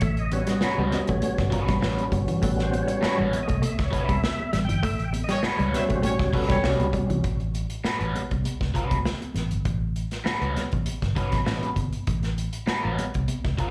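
Heard through a club PA with a touch of room reverb, this cut from a longer funk piece in A mixolydian moves at 100 BPM in a straight 4/4, energetic and gritty, opening on an A13 chord. A fat, key-clicking tonewheel organ with slow rotary speaker and tape echo takes the solo in percussive stabs over a dark, clean semi-hollow guitar riff, both stopping at 7.2 s, while a mellow, distant horn section adds a brief octave-doubled second line from 5.3 s during the band accents. Underneath, a round, foam-muted fingered bass, a punchy vintage kit with a rolled-off top, ringing high-tuned congas in the background and a bright, phased overdriven guitar entering at 0.6 s carry the groove to the end.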